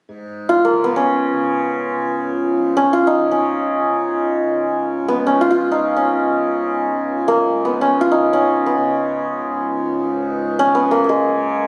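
A bright, ringing santur sits up front and carries the melody from 0.5 seconds over a softly plucked, buzzing tanpura drone held low in the mix, in this devotional, radiant Hindustani classical fragment, cut from a longer piece and captured on a phone in a room with club reverb and compression.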